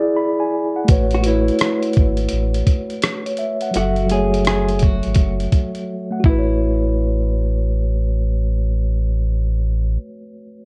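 Lo-fi hip hop at 84 BPM in A major, dreamy and unhurried, with a swung 16th-note feel and the haze of cassette tape and light reverb, cut from a longer piece. A mellow tine electric piano, heard through its built-in speakers and treated with a low-pass filter and plate reverb, opens alone on an E7 chord before a gritty, compressed sampler-style soul kit arrives at 0.9 seconds, bringing a thumpy kick, hi-hat and rim click with a roomy character, alongside a deep sine-and-triangle sub bass with octave. A dark, clean, fingered hollow-body jazz guitar carries a narrow melody over A6/9 and F#m7 harmony, and after the drums stop at 6.5 seconds the piano, bass and guitar carry on.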